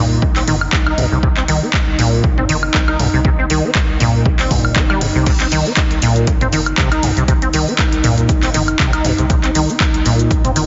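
Trippy and driving, this short acid house excerpt in C minor at 119 BPM, with a 55% swing on the 16ths, sits on a single C minor chord: a squelchy, resonant sawtooth acid bass riff up front, soaked in tube saturation, ensemble chorus and dub echo, rides over a round, deep analog bass and a smooth, warbling detuned pad held in the background with lush chorus, all three pumping against a punchy tape-warm kick that enters at 0.2 s, while an up-front analog drum machine from 0.4 s adds crash, handclaps, hi-hat, shaker, toms and woodblock, everything framed by light digital ambience and a heavily compressed, radio-like sound topped off at 7.6 kHz.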